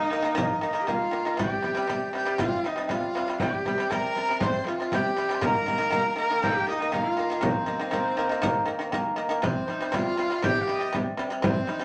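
Vast and windswept, this excerpt of Mongolian folk moves at 119 BPM in a straight 4/4 in C yu mode: a husky, close horsehead fiddle carries the melody with vibrato and portamento, a bright bamboo dizi with a buzzing membrane spins a crisp second line above it, fingerpicked pipa arpeggios sit dry and percussive up front, and a deep, large frame drum keeps time, all set in a wet studio reverb with tube saturation, before the music shifts into a new section at 9.4 seconds.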